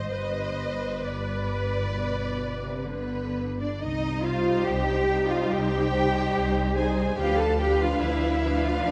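Bowed strings sound through a moderate scoring-stage reverb in this brief fragment of a slow, rubato romantic movement, yearning and solemn in mood. Close, expressive violins carry the melody over a lush second violin line, while focused violas supply the accompaniment, and smooth, even cellos and up-front double basses anchor the bass, every section playing with vibrato. The harmony moves from G to C minor as a new section begins at 3.8 seconds, then to a Bdim/D chord at 7.2 seconds.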